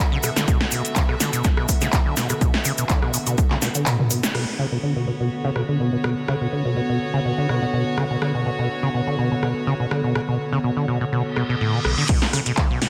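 A grainy, close tube shaker and an analog drum machine with metallic hats and punchy snare open this trippy, playful acid house excerpt at 124 BPM, while a rubbery, resonant sawtooth acid bass with filter sweeps, tube saturation and tape echo pumps a Bm7 groove beneath a dark, warbling, detuned pad in the background and a reedy, gut-toned chamber string ensemble. An overdriven, dry electronic kick hits up front until 3.5 seconds, just before a drum fill that carries the groove to 4.3 seconds, when the shaker stops. The section then rides on kickless, with a reverse cymbal entering at 11.3 seconds and the kick returning at 12.1 seconds, all set in a lush hall reverb under a dense, heavily limited master.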